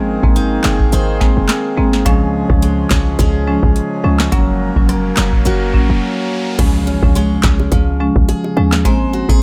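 Summery, sunny dancehall with a gentle 16th-note swing, built on a booming, tape-warm drum machine up front with a deep kick, crisp snare, metallic hats, claps and rim clicks, a punchy, tight 808-style bass, a woody rosewood marimba, bright, full-bodied picked steel-string guitar arpeggios and reedy, breathing harmonium chords that pump with a sidechain until 6.6 seconds, while a background riser builds into a brief break and impact at 6.6 seconds and close, dry, high-tuned bongos slip in at 7.6 seconds, all in a dry mix.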